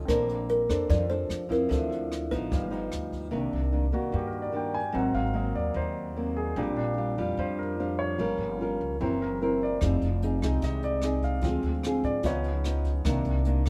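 A present, intimate grand piano with audible action noise and deep bass takes a solo from 3.3 seconds in this smooth bossa nova excerpt in C minor at 148 BPM, after a short, hollow, thumb-plucked kalimba melody that ends by 2.9 seconds, over an up-front, warm nylon-string guitar, a woody, growly pizzicato upright bass, and an airy brushed drum kit with a boomy kick that drops out and returns at 9.8 seconds, all in light reverb.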